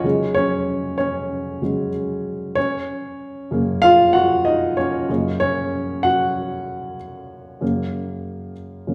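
Anthemic and warm, this short pop fragment is carried by a lone baby grand piano. The piano's tone is dark, mellow and intimate, sitting up front with audible action noise and a short sustain that keeps each note natural and close. It spans from F#2 to F#5 over a 4/4 pulse with a light swing on the sixteenths. The harmony opens on a suspended C#sus4 chord before settling onto F# at 2.6 seconds, and the passage moves into a new section at 7.6 seconds. A large, wet studio reverb gives the room-recorded performance a spacious, live feel as the clip closes at 8.9 seconds.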